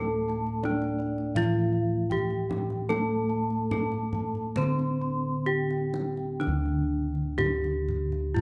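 A bright, ringing bronze metallophone struck with a horn mallet carries the melody up front in this serene, ceremonial slice of Javanese gamelan in D slendro. It moves at a measured 62-88 BPM in straight 4/4 over round, beating bossed gongs in the bass. Beneath the melody, a mellow, boxy metallophone on padded disc mallets plays the accompaniment, its paired tuning giving a shimmering beat. A higher, airy metallophone of the same kind spins arpeggios until 6.4 s, when the music moves into a new section, while a soft-handed, distant kendang adds tight percussion from 0.3 s, all set in a moderate recital-hall reverb.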